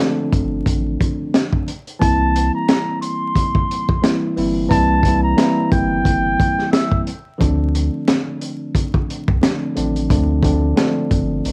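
Swung sixteenths drive this moody, tough boom-bap hip-hop excerpt, where a worn, slightly out-of-tune tine electric piano opens alone with cassette-tinged chords before a crunchy, gritty breakbeat kit with a punchy kick and a high-tuned snare and a thick, saturated sub bass join at 0.3 s, a veiled cup-muted trumpet plays a vintage jazz-style solo with vibrato and scooped notes from 2.0 to 7.0 s, and very quiet finger snaps sit in a live room behind the dry, crackling home-cassette sound.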